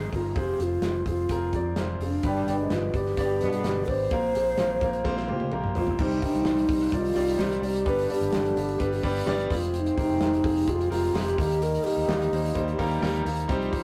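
A breathy, bright clay ocarina opens this bittersweet, earnest piano-driven pop excerpt in C minor at 128 BPM, carrying the melody with close-miked, tongued phrasing and expressive vibrato over a concert grand piano that sounds open and up front, with deep bass and long sustain. A fingered electric bass, dark and amped with a round, punchy tone, anchors the low end, while a very quiet electronic downlifter sounds in the first 2.2 seconds. A modern studio drum kit enters at 0.1 seconds with a punchy kick, medium-tuned snare, hi-hat, toms and crash cymbal, its sound dark and smooth. From 2.2 seconds a French horn section adds a second line in a classical style, with soft attack and light vibrato. A drum fill at 5.1 seconds leads into the second section at 6.0 seconds, where the harmony moves through Cm, G, Fmadd9 and Eb. The whole recording has a rough rehearsal-room character, with tube saturation and a wet small-room reverb.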